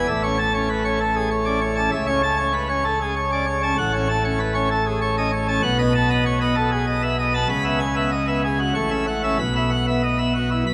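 A full pipe organ plenum, bright with mixtures, crisp chiff and a baroque voicing, plays alone and up front from the start of this brilliant, majestic classical organ toccata in A major at 97 BPM in 3/4, tuned to A4 = 437 Hz and spanning A1 to C#6, moving from A through B7 and C#m7 to a Bsus4 at 9.4 seconds inside a wet church reverb that rings for 3.7 seconds, cut from a longer piece.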